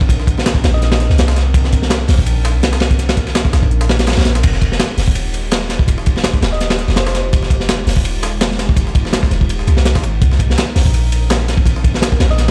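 Frenetic yet atmospheric, this drum and bass excerpt drives a saturated, gritty breakbeat kit up front over a deep, boomy 808-style bass, with a pitched-up, compressed sampler-style kit in the background, a warbling, nostalgic pad sustaining chords, and a round, tine-like thumb-piano pluck with dub echo surfacing at 0.7, 6.5 and 12.3 seconds, all set in a stone-room reverb, as the kick drops out from 3.7 to 4.4 seconds.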